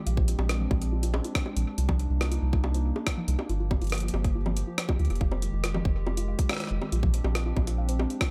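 A straight 4/4 pulse at 140 BPM drives this eerie, cerebral IDM passage, cut from a longer piece and running about 8.3 seconds. A tight electronic kick sits up front with a small-room ambience, while a pitched-up, sampler-style jungle kit of bongos, hi-hat and rim clicks adds gritty, overdriven texture treated with analog delay. Beneath it, a round analog bass holds the low end with a dark, deep tone and a filter sweep. A hollow, flute-like pad sustains mellow chords with chorus, moving through Bb13, Cm9, Gm7 and Fm9 before returning to Bb13. Set in the background, a soft, full-bodied pluck traces decaying arpeggios through chorus and analog delay, and the whole mix carries light reverb and an echo-heavy character.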